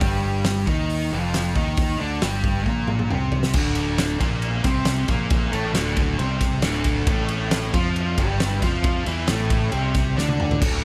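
A straight 4/4 pulse at 136 BPM drives this dark, cathartic quiet-loud alternative rock excerpt in D minor, where a loose indie drum kit with a fat snare, punchy kick and dark cymbals in a pumping studio room sits up front beside a picked, double-tracked overdriven electric guitar riff, while a growling fingered electric bass with its own overdrive holds the low end, the harmony moving through G5, D5 and A5 as a drum fill from 2.7 s leads into the second section at 3.5 s, the whole mix dry with little reverb.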